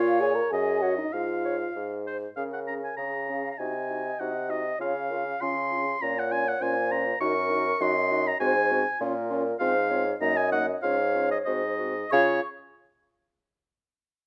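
In a straight 2/4 at 98 BPM, this lively, cheerful excerpt from a quick classical-period wind quintet movement in Db major sets a hollow, mellow silver flute melody, tongued with vibrato but sitting in the background, beside a clear, up-front oboe second line, while the smooth-topped French horn and warm clarinet fill in the accompaniment and an up-front bassoon carries the warm bass, all in light reverb, before the tempo slows from 9.0 to 12.1 seconds into a closing Db chord.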